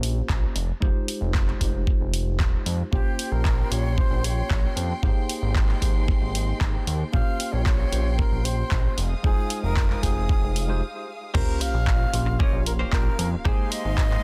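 Cosmic and groovy, this nu-disco excerpt moves at 114 BPM in Bb dorian, built on a fat, saturated analog bass with a nasal sawtooth bite, a thumpy, gritty kick held up front, and an overdriven house kit of crash, handclaps and hi-hat, while a worn, slightly out-of-tune tine electric piano pumps under sidechain and digital delay. From 2.9 s a breathy, reedy concert flute carries the melody with vibrato and delay over smooth, bowed violin chords that also pump, cycling through Bbm69, Fm7 and Abmaj7. After a short break, the drop at 11.3 s brings a very quiet sub drop and a twangy, clean direct-recorded guitar riff drenched in lush chorus, all within a dry, dense, heavily limited modern master.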